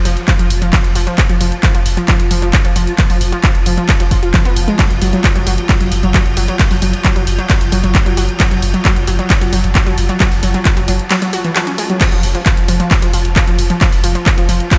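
A punchy electronic kick drum leads this relentless, hypnotic slice of driving peak-time techno, entering at 0.3 s and holding a straight 4/4 pulse at 133 BPM with a tape-warmed, large-room character. Around it, an analog drum machine supplies crash and ride cymbals, handclaps and hi-hat, while a deep, round sub bass hovers between F1 and Gb1, thickened by tube saturation, rounded off by a low-pass filter and pumping under the sidechain. A pluck riff built from detuned sawtooth and square waves with a noise layer snaps with a fast filter pluck and short decay, its bright tone spread by chorus and trailed by delay. In the background, a swarming, tense drone of detuned sine voices evolves through a moving notch, a granular texture and a long release, and it too pumps under the sidechain. The harmony settles on a Gb5 chord at 4.8 s before falling away at 12.0 s, and the whole cut from a longer piece sits in a light digital ambience.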